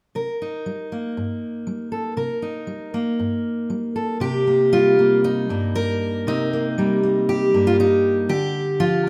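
The rhythm is loose and rubato, drifting around a pulse near 118 BPM in 4/4 rather than holding strict time. This short folk passage, cut from a longer piece, features a single fingerpicked steel-string dreadnought acoustic guitar in C minor, playing from 0.2 to 9.1 seconds. The mood is reflective and intimate, with the guitar sitting up front and sounding bright and full-bodied, its fresh strings ringing across a range from G2 to Bb4. The passage rests on a Cm7 harmony before moving to Dm at 8.3 seconds, and the music shifts into a new section at 4.2 seconds. A light reverb gives the solo instrument a touch of space while keeping it close and personal.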